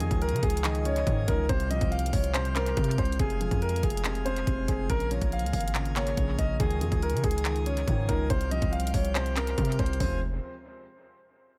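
A half-time trap groove at 141 BPM in 4/4 drives this menacing, brooding hip hop fragment in F minor, cut from a longer piece. The up-front electronic kit pairs a knocking kick and bright hats with handclaps and toms, all sent through dub echo, while a hard-hitting 808-style bass, punchy and heavy with a fast attack and decaying tail, anchors the low end. A dark baby grand piano carries the melody up front, its mellow, vintage tone softened by a low-pass filter and dub echo, above a felt-muted upright piano whose intimate accompaniment keeps its audible action noise. A pipe organ plenum holds full, brilliant sustained chords underneath, and from 0.6 to 2.7 seconds a hollow, woody clarinet-like synth lead with chorus and vibrato adds a second line in the background. The harmony moves through Dbadd9, Csus4, Fm and Bbm7, and the whole mix sits in an echo-heavy studio reverb.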